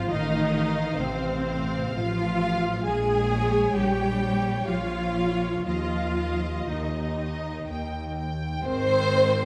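Serene and lyrical, this slow romantic movement for string orchestra in a flexible 3/4 carries its melody on a clear, distant violin section above a rich, focused second violin line, while an intense, up-front viola section accompanies and a smooth, close cello section joins a lightly vibrato double bass section on the bass. The ensemble sits in a moderate scoring-stage reverb with a dark, warm production as the harmony moves through Bbm7 and Ebsus2 before settling on Ab at 8.6 s.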